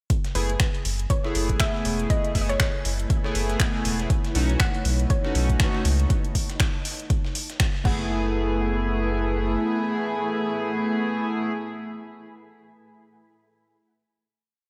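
Late-night and deep, this deep house piece at 120 BPM in F# dorian rides a punchy, overdriven four-on-the-floor electronic kick drum, metallic hats, snaps and crash from the deep house drum kit, and a very quiet, gritty looped breakbeat from the dusty soul sampler-style drum kit, while a sine-toned warm sub bass plays off-beat, a glossy chorused polysynth fires syncopated rootless stabs with sidechain pumping and delay, a soft round pluck traces mellow call phrases, a cloudy granular cloud pad blurs in from 2.5 s, and an airy breathy pad with 12-bit sampler grit joins at 4.1 s before the groove gives way at 8.1 s to a final F#m11 chord in a dreamy mix soaked in lush hall reverb.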